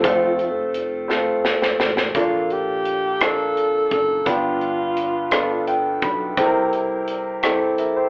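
This slow gospel piece in 6/8 at 57 BPM sits in Bb major and feels reverent and soulful, cut from a longer piece. A clean tonewheel organ opens with sustained chords through a slow rotary speaker and chorus vibrato. Meanwhile, a clear, woody upright piano with long sustain carries the accompaniment up front, and a growly, punchy fingered electric bass sits low beneath it. The acoustic drum kit, with a punchy kick, medium-tuned snare, rim click, hi-hat and a rolled-off top, plays a fill before a breathy alto saxophone enters at 2.2 seconds with a subtone, jazz-style melody colored by vibrato. The piano adds a fill around 5.3 seconds as the harmony moves from Bbmaj7 through G7 to C7, and the band sounds like it is playing together in one room, bathed in a moderate large reverb yet filtered to a narrow telephone tone.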